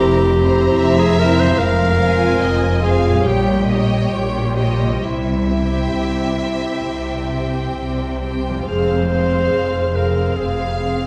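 A clear solo clarinet carries a second line alongside two lush, vibrato-rich violin sections, one singing the melody, while dark, woody violas accompany, a ringing fingerpicked harp plays arpeggios in the background, and bowed cellos and double basses anchor the bass in this solemn, elegiac slow romantic orchestral passage in F minor, cut from a longer piece, moving with rubato at 64-75 BPM in 4/4 and bathed in wet scoring-stage reverb.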